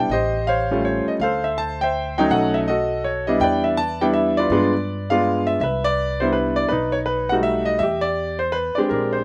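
This jazz fragment swings in a relaxed 3/4 at 164 BPM, with a moderate swing on the eighth notes and a home key of C major. A clear grand piano carries the melody up front, close and intimate, with the natural sound of its action noise audible beneath the notes. An acoustic upright bass plays pizzicato in its low register, woody and thumpy, sitting well beneath the piano in level. The harmony moves through colourful chords such as A7alt, Dsus2 and G7b9 before a new passage opens on Cmaj9 at 5.6 seconds and settles back onto Em7. The sound is dry and open-air, with little reverb, so both instruments come across direct and unadorned.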